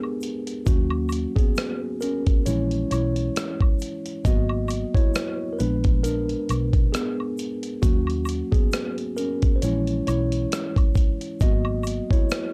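A dry, gritty recording with transformer saturation and little reverb gives this nostalgic, reflective lo-fi hip hop excerpt an intimate, hardware-processed character. At a relaxed 67 BPM in 4/4 with a light swing on the sixteenths, a worn, slightly out-of-tune tine electric piano sits up front and carries a solo for the whole passage, its mellow tone softened by cassette tape coloring and a low-pass filter. A sampler-style soul drum kit of hi-hat, thumpy kick and rim click joins at 0.2 seconds, compressed and up front, with a roomy quality from being re-recorded in a large space. A dark, foam-muted fingered electric bass enters at 0.7 seconds with a round, amped tone, staying low in its register until 12.0 seconds. Close acoustic woodblock, egg shaker and group handclap add a faint layer of texture beneath it all, while the harmony cycles through jazzy minor chords such as D#m7, A#m7b5 and G#m9, with an A#7b9 pulling back around.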